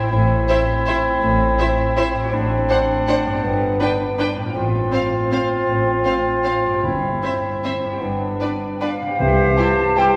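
An elegant, sweeping orchestral ballroom waltz in C major at 145-176 BPM opens with an up-front clarinet, mellow bassoon and ringing harp arpeggios over rich cello and double bass, joined at 0.5 seconds by distant, lightly vibrato violins carrying the melody above dark background violins and very quiet violas, with very quiet hard-mallet timpani at 6.8 seconds and a pure, hollow flute section, a smooth oboe and a tight, dark horn section arriving near the end, all flowing with rubato in a reverberant church acoustic.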